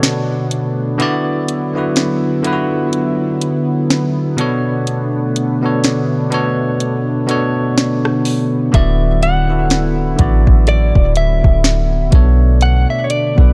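A bell-like, bright tine electric piano carries the accompaniment in this tender, dreamy contemporary R&B fragment in D major at a slow 62 BPM with a lightly swung 16th feel, set over a soft-kicked, sharp-snared electronic drum kit with rim clicks and hats and a shimmering, detuned pulse-width pad that pumps from sidechaining in the background, while a barely audible downlifter sounds until 1.0 s and, at 8.7 s, a round, deep 808-style bass and a clean, direct-recorded picked electric guitar melody with digital delay arrive, all in a dark, dry production moving between Bm9 and D69.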